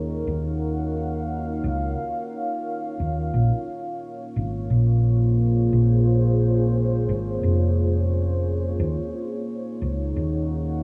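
Deep and hazy, this short ambient dub excerpt floats on a dark, warbling pad of detuned sawtooth voices with a sine sub octave, its slow-attack chords blurred by chorus and its own reverb as they move from Ebm7 to Bbm7 and back at 8.8 seconds. Beneath it, a hollow-body short-scale electric bass, played with the fingers, sits up front with a round, amped tone. A huge ambient reverb tail, about 6.8 seconds long, hangs over a small-room ambience.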